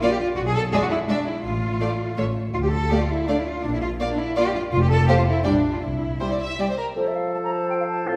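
A quick 164 BPM in 3/4, played with a rubato give-and-take, drives this stormy, restless excerpt from a classical-period movement for symphony orchestra. It opens in D minor on strings: a lush violin section carries the melody in the background while a second, distant violin section adds an expressive line. A focused viola section and an up-front cello section fill in the accompaniment and bass, with a rich, close double bass section entering at 0.4 s. The harmony moves from D minor through B-flat, settling into F major from 4.7 s before touching G minor and C. At 7.0 s the strings give way to winds. A pure, straight-toned flute and a mellow oboe take the second line, a smooth bassoon sits up front in the accompaniment, and a dark, tight French horn section holds sustained chords with a soft attack, with a roomy clarinet joining at 7.3 s. The whole passage sounds in a wet recital hall with a long, reverberant tail.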